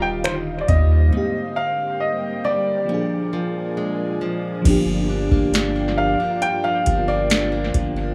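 A deep, long-sustained 808-style bass sits up front in this late-night, longing contemporary R&B excerpt at 68 BPM, sounding from the start alongside the other instruments, with a booming, tape-warmed analog drum machine entering at 0.2 seconds with a deep kick, crisp snare, metallic hats, finger snaps and crash cymbal. An open baby grand piano carries the melody with long sustain and delay, over a lush, dreamy FM electric piano layered with a soft pad, picked steel-string acoustic guitar arpeggios with audible finger squeak, and an ethereal, detuned pad in the background with a slow attack and sidechain pumping. The echo-heavy mix moves through Ebmaj9, Abmaj9#11, Bb7 and Gm7, with a break from 1.1 to 4.7 seconds.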